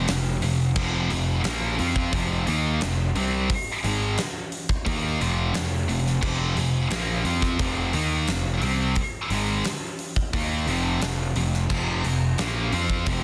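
Energetic and anthemic, this hard rock passage moves at a steady 88 BPM in a straight 4/4, cut from a longer piece and running about 13.2 seconds on a single F5 chord. Two electric guitars carry the riff across the full span: a heavy high-gain part, bright and scooped with distortion, sits alongside a crunchy overdriven guitar that stays in the background with a warm, picked tone. Underneath, a picked electric bass sounds up front, its overdriven fuzz giving it a gritty, amp-driven edge. A huge arena drum kit enters at 0.1 seconds, up front in a big room, with a fat snare, punchy kick, hi-hat and crash cymbal. Light reverb and studio ambience frame the parts, and the mix is dense and heavily limited in a modern style.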